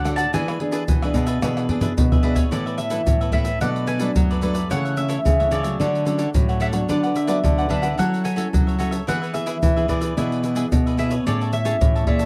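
Festive and joyful, this short samba and choro excerpt sets a round, double-strung picked mandolin melody with tape echo over crisp picked cavaquinho accompaniment and an up-front fingerpicked nylon-string guitar whose finger squeaks are audible, while a second classical nylon-string guitar carries the bass in the background. An up-front percussion group of egg shaker, pandeiro, tamborim and tight surdo played with hard hands comes in at 0.1 seconds, with a drum fill from 1.4 to 2.5 seconds leading into a new section as the harmony moves through Bm7, Dmaj7 and F#m7 toward Amaj7. The sound is dry and close, in a 1970s studio style with light reverb and a small-room feel on the percussion.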